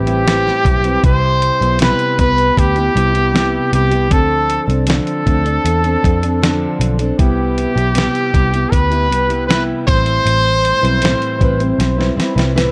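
Indie pop with a bedroom-pop haze, this short cut from a longer piece moves at an unhurried 78 BPM in C major, nostalgic and hazy under a dark, softly roomy production. A brilliant, up-front trumpet carries the melody with pop-style vibrato, its tone bathed in lush chorus and a slapback echo, and it drops out at 12.1 seconds. Beneath it, a fingerpicked plugged-in steel-string acoustic guitar with fresh strings and a full-bodied jumbo tone adds gentle accompaniment, colored by subtle chorus and a warbly pitch drift. A vintage muted picked electric bass sits round and punchy in the low end, while a gritty, compressed sampler-style drum kit with a thumpy kick and fat snare stays up front and closes with a fill from 11.8 seconds. The harmony drifts through Am9, Cmaj7, Dm7 and back to Cmaj7 and Am9.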